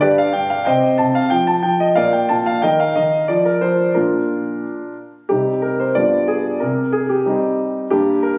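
This classical-period piano sonatina excerpt moves at 92 BPM in a straight 2/4, with a playful, cheerful mood. A solo concert grand piano plays throughout, spanning G2 to A5 with a clear tone, deep bass and an open, up-front presence. The opening section sits in Bb major, touching on G, C minor and Eb5 harmonies with brief unharmonized moments. At 5.3 s the music turns to C minor, leaning on a G7 chord before settling back on C minor. The piano was captured on a phone in the room and carries a light reverb.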